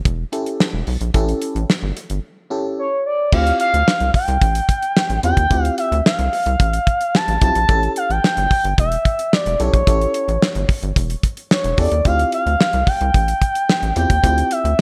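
An expressive portamento lead, smooth and dark with a sawtooth edge, vibrato, chorus and delay, enters at 2.8 s and carries the melody up front in this slick, funky excerpt of early-eighties boogie funk. Beneath it, a rubbery square bass with a bouncy filter pluck and a hollow, detuned, resonant tone holds the low end from the start. A damped 70s drum kit sits close and dry, with a fat snare, tight kick, hi-hat and crash cymbal, its rolled-off top wrapped in gated reverb. A glassy FM electric piano adds chorused chords with a bell-like attack and a noise layer, set lower in the blend. The groove moves at 110 BPM in a straight 4/4 in D minor, alternating between A7 and Dm11, with a short opening passage giving way to a longer second section at 3.3 s. Light small-room reverb frames a bright digital production typical of the 1980s.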